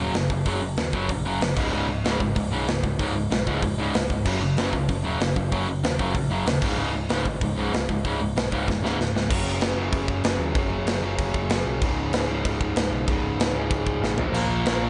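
A rowdy, energetic punk rock excerpt in Db major, driving along at 190 BPM in a straight 4/4. Two electric guitars play riffs together. One is bright, compressed and distorted, and the other is a warm overdriven tone that drops out at 9.3 seconds and returns briefly near the close. Beneath them, a growly, amped picked bass adds punch. A big acoustic rock kit sits up front with bright cymbals, a medium-tuned snare and a punchy kick, and it throws in fills just before 9.3 seconds and again around 14.0 seconds. Power chords move between Gb5 and Db5, landing on Bb5 at the end, all in a light reverb with a slightly dark top end.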